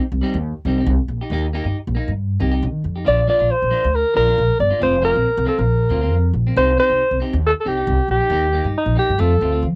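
Sunny and carefree, this short cut from a longer highlife guitar band piece moves at 137 BPM in 4/4 with a gentle swing on the sixteenths, tuned slightly below standard pitch to A4 = 438 Hz. A clean electric guitar opens at once with bright, twangy picked accompaniment, sitting low in the mix beneath an upright bass whose woody, growly pizzicato sits up front with a dark, steel-string edge. At 3.1 seconds a breathy alto saxophone takes the melody, playing in a jazz style with subtone and scooped notes, its vintage solo voice carrying the colouring of cassette tape. The harmony moves through Cm, Eb, Bb and Fsus4 before returning to Cm and Eb and landing on F. The home cassette recording is dry and intimate, with little reverb around the players.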